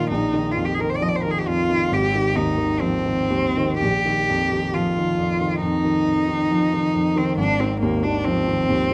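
Dreamy and pastoral, this short cut from a longer impressionist classical duo drifts in rubato 4/4 at 57-70 BPM, tuned to A4 = 438 Hz, as a rich, up-front bowed cello sings the melody with expressive vibrato and portamento over a warm, intimate baby grand piano whose accompaniment carries audible action noise and short sustain, the two sounding together from 0.0 to 8.9 seconds through Bbsus4 and Ab chords in a moderate recital hall reverb captured by close, detailed microphones.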